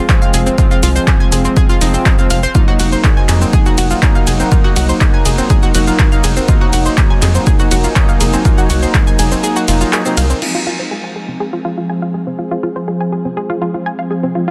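A straight pulse drives this cinematic, hypnotic slice of melodic techno: an up-front, punchy electronic kick and an analog drum machine, both re-recorded in a small room, supply crash, handclaps, hi-hat, ride and shaker. Underneath, a tight, driving sequencer bass with a sawtooth-and-square filter pluck pumps against the kick. A round analog pluck spins bright arpeggios with a sub octave, chorus and digital delay, while a fat, nasal analog synth brass fires bold stabs with vibrato and its own delay. Behind them, an evolving wavetable pad of detuned unison triangle and sine waves holds slow-blooming chords with built-in reverb, with chorus and sidechain pumping on the pad, pluck and brass. The kick stops at 9.0 seconds and the other drums fall away by 10.5 seconds, and from 10.4 seconds filter sweeps move through the synth layers as the harmony returns from Ebm/F to Fm. The mix is dense and heavily limited, with light reverb.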